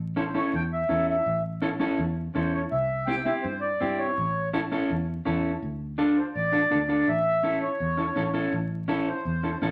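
A reedy, up-front accordion with a slow beating shimmer and a vintage, band-limited tone carries the melody in this driving, fiery cumbia excerpt at 165 BPM, moving into D harmonic minor at 5.6 s. A clean, dark electric guitar plays accompaniment alongside it, equally up front, while a round, foam-muted fingered electric bass sits lower in the mix. The whole clip has a wet studio reverb and a layer of vinyl crackle.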